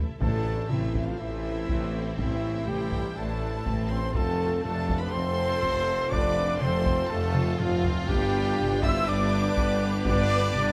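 Epic orchestral film score in A minor at 122 BPM, dark and epic, where a close, expressive chamber violin section carries the vibrato-laden melody over a mellow, hollow flute and a lush symphonic violin section on second lines, while a mellow trumpet punctuates with stabs. Beneath them, a very quiet string section and a bright, tight trombone section sustain chords alongside a vintage-toned French horn section and a smooth viola section, with the harmony moving from Am to F at 4.2 s and G at 8.1 s. A rich cello section, distant double basses and a roomy tuba anchor the bass, while a heavy-sticked taiko ensemble plays throughout, with a drum fill at 7.4 s, a brief timpani hit at the start, and moderate concert hall reverb in this excerpt from a longer piece.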